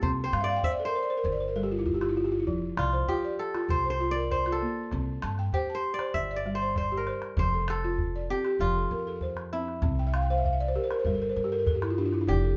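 A ringing, crisp, fingerpicked kora carries the melody as a solo through the first 7.4 seconds of this joyful West African string and xylophone excerpt at 98 BPM in F major, backed by a buzzing, woody balafon struck with soft rubber mallets playing arpeggios and fills, a dark pizzicato upright bass with steel strings, and a small calabash for percussion, with a drum fill at 6.9 seconds leading into a second section, all set in a moderate small room.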